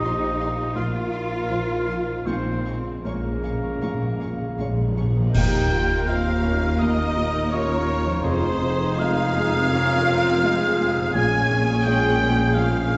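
A rubato 4/4 pulse of about 76-85 BPM carries this sorrowful, moving cinematic orchestral passage in Bb dorian, where a distant, lush violin section sings the melody above a close, rich second violin section, an airy, hollow flute and a vintage-toned oboe. A very quiet felt-muted upright piano with audible action noise and an intense double bass section support them, while smooth violas, soft-attack cellos, a tight, mellow French horn section holding chords and a ringing, fingerpicked harp sit in the background. Calf-headed timpani play a fill, and the cymbal swell, clash cymbals and concert bass drum add bright accents between 2.3 and 6.8 s. A dark, roomy clarinet enters at 5.3 s, and the whole orchestra is heard from deep within a reverberant scoring stage.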